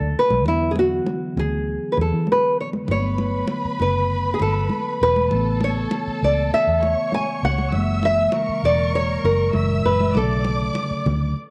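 A fingerpicked nylon-string guitar carries the melody up front over a round, foam-muted electric bass, a mellow tine electric piano and soft-handed congas in the background, with a dark, lush string section adding a second line with vibrato and portamento from 2.9 seconds, in this smooth, warm 1970s-style soul excerpt at 99 BPM that moves from E7 through Gmaj7, A and F#7 to Bm7 in a small room with spring reverb before stopping at 11.4 seconds.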